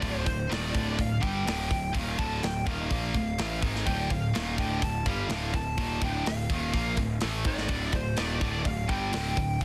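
A dense, heavily limited modern master in a small room gives this short heavy metal excerpt a crowded, relentless weight. At 125 BPM in straight 4/4, it sits in D phrygian over a Dm chord, with an epic mood held across the full 9.6 seconds. A bright, double-tracked high-gain distorted guitar drives the riff up front between D2 and Bb3, while a growly fuzz-toned picked electric bass, direct and amped with overdrive, anchors the low end from D1 to Bb1. The tight metal drum kit is an acoustic studio kit placed up front and mid-forward, with hi-hat, a medium-tuned snare and a tight kick given soft clipping, its top rolled off for a rounded character. Above it all, a high-gain lead guitar carries the melody between C5 and A5, its distortion trailed by delay and its tone sitting slightly back from the rhythm parts.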